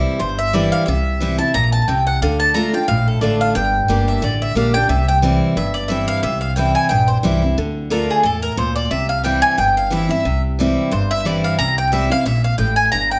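A picked steel-string dreadnought guitar and a pizzicato upright bass open this bluegrass passage together, with the mandolin joining at 0.2 s to carry the melody. The tempo is a brisk 179 BPM in 4/4 with a 55% swing on the eighth notes, yet the mood is lonesome and haunting, moving through C, Dm and Gm before settling back on C. The double-strung mandolin sits up front with a bright, woody tone and a slapback echo, ranging from G#4 to Bb5. The guitar, also up front, sounds full-bodied as it accompanies from G2 to G4, while the steel-strung bass adds a warm low foundation between G1 and E2. A moderate large-studio reverb surrounds the trio in this short section, which is cut from a longer piece.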